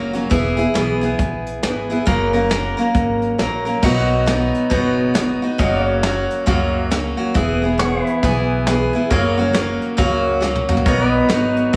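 A swung 136 BPM groove in 4/4 sets a sunny, down-home honky-tonk country mood in B major, with a bright, full-bodied picked acoustic guitar up front over woody pizzicato upright bass and dark, smooth brushed drums with a punchy kick, before a clean pedal steel guitar enters at 3.8 seconds with sustained, compressed chords and volume swells, and a drum fill at 10.4 seconds leads back to B, all set in a moderate hall reverb.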